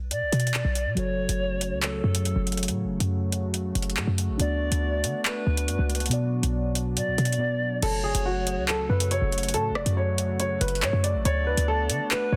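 A reedy pan flute with tape echo hovers over a punchy, decaying 808-style bass and metallic-hatted drill drums in this menacing, tense half-time hip hop excerpt, where muted felt-like synth keys and a detuned analog pad carry the first part before a silent gap at 7.4 seconds gives way to a worn, dark grand piano melody at 7.8 seconds.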